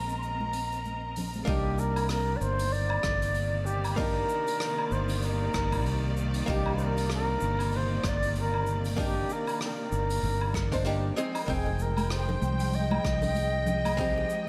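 Smooth and wistful, this sunset chillout excerpt in C minor moves at 96 BPM with a swung 16th feel: a mellow wooden flute with delay carries the melody over a dark, clean archtop guitar with digital delay, bowed strings holding sustained chords with expressive vibrato, an up-front fretless bass with subtle chorus and distant brushed drums with gated reverb, while ringing congas and bongos sit in the background before a punchy, overdriven electronic kick joins at 1.5 s and the percussion returns at 11.7 s, the harmony moving from Bb9sus4 to Cm9 and Fm9 inside a lush hall reverb and a bright 1980s-style digital sheen.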